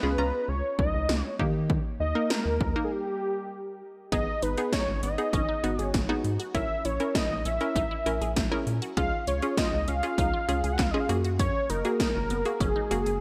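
A synth-pop excerpt in G# minor at 99 BPM, nocturnal and melancholic, moving in a straight 4/4. A thick, bold unison lead carries the melody up front from the start, over a rounded, detuned analog pluck with chorus and a rubbery, hollow square bass, while the chords move from C# to D#. The 80s electronic pad drums arrive at 0.8 seconds, overdriven and punchy, with a gated snare, metallic hi-hats and handclaps. After a break from 2.9 to 4.1 seconds, the harmony turns to G#m, A#dim, C# and F#add9, and a squelchy, juicy blip pluck joins at 4.1 seconds with arpeggios, sitting in the background with phaser and delay. Light reverb and a digital ambience frame the whole mix.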